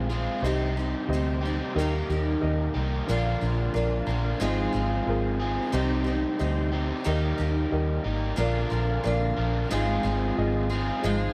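A straight 4/4 pulse at 90 BPM carries this wistful, dusty folk rock and heartland rock excerpt, where a round, foam-muted electric bass sits up front beside a double-tracked, overdriven electric guitar riff and a shimmering, octave-doubled twelve-string acoustic with woody old strings, while from 0.4 seconds a natural upright piano and a reedy tonewheel organ with key click, slow rotary speaker and chorus vibrato hold the background over a cycling Cm, Eb, Bb, Fm7/Ab progression in a dry, close 1970s-style studio sound.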